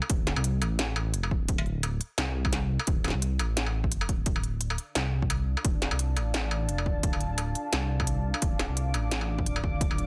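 A swung, half-time drum and bass groove drives this tense, cinematic fragment of a longer piece, with an up-front electronic kick landing heavy beside an industrial kit of crisp hats, a clanging snare and struck metal, both tape-tinged and set in studio reverb. Underneath, a dark, detuned sawtooth bass rumbles and beats from the start. At 5.5 seconds a deep, moody ambient pad enters with chorus, its own reverb and sidechain pumping, all inside a dense, heavily limited modern master with light digital ambience.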